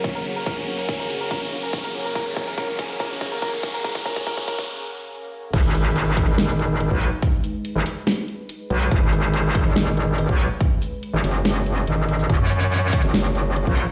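A metallic, aggressive wobble bass drops in at 5.5 seconds on G# minor to drive this chaotic, menacing heavy dubstep excerpt at 142 BPM in a half-time feel, joined by a second overdriven wobble bass layer in brief bursts from 6.3 and 9.7 seconds. It follows a build-up in which a worn baby grand piano with dub echo, a warbly lo-fi tape-like pad, a riser and a drum fill from the dubstep kit's huge snare and bright hats play until a brief break at 4.7 seconds. Beneath them, a lush detuned unison pad and a punchy electronic kick carry on throughout. The whole mix rings in a stone room reverb, as if played on a big sound system in a bare room.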